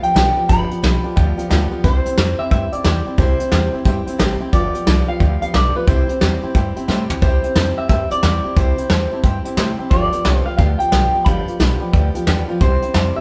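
Recorded live in a stone room with moderate reverb, this upbeat, retro rockabilly excerpt swings along in 4/4. A twangy, slightly broken-up electric guitar through a small old amp carries the melody over a bright, full-bodied dreadnought acoustic guitar, a woody upright piano in the background that adds a fill at 0.8 seconds, and a dark, thumpy pizzicato upright bass on gut strings. Up front, a soft brush kit with a tight kick and a medium-tuned snare closes the first section with a fill at 6.9 seconds.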